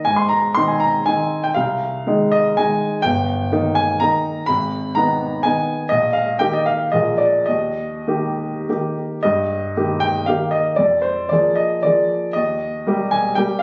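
This is a classical, romantic triple-time dance for solo piano in Eb major, cut from a longer piece, with a proud, rustic character carried by its dotted rhythms. The tempo moves with rubato between 94 and 134 BPM in 3/4. A baby grand piano with a warm, open tone sits up front and plays alone throughout the 13.6 seconds, ranging from G1 to C6. The harmony opens on Ab and passes through Abm and a Bb7 before settling on Eb at 7.5 seconds, and a new section from 9.2 seconds circles back through Bb7/F to close on Eb. The piano was recorded on a phone in the room, and it is surrounded by a moderate recital hall reverb.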